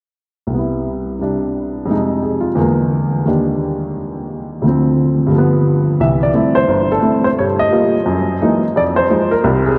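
A solo baby grand piano carries this swinging, sophisticated jazz fragment, cut from a longer piece, playing alone from 0.5 s to 9.8 s across a span from G1 to E5. Its tone is warm and intimate, with a natural, short sustain and the audible noise of the action. The piano sits up front, yet it rings into a vast, echoing cathedral space whose long, wet reverb trails behind each phrase. The harmony moves through rich extended chords, from Cmaj7 through Fm7, E7#11 and Ebmaj7 to a Dm7 and G7 turn. A second passage begins at 6.0 s on C6 and colors the close with Ebadd9/G, F#13 and a return to Fm7, keeping the mood polished and urbane.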